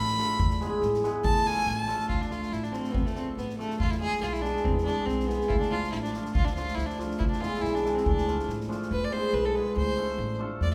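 The recording sits in the lush reverb of a church or concert hall, with a decay of about 1.4 seconds. This short cut from a longer piece is Balkan folk in the wedding-band style, bittersweet and fiery, moving at 141 BPM in a swung 2/4 and rooted in D dorian with a raised fourth. Up front, a single fiddle carries the melody with a rich, earthy, close tone, light vibrato and an airy bow, taking a solo in the opening section before the music shifts at 2.1 seconds. Beside it, a hammered cimbalom shimmers and rings as accompaniment, while a pizzicato upright bass on gut strings gives a woody, thumpy low end. A street-band kit of boomy kick and medium-tuned snare adds polished, big-room percussion until it stops at 8.9 seconds, where a final section begins. The harmony rocks between E and D minor throughout.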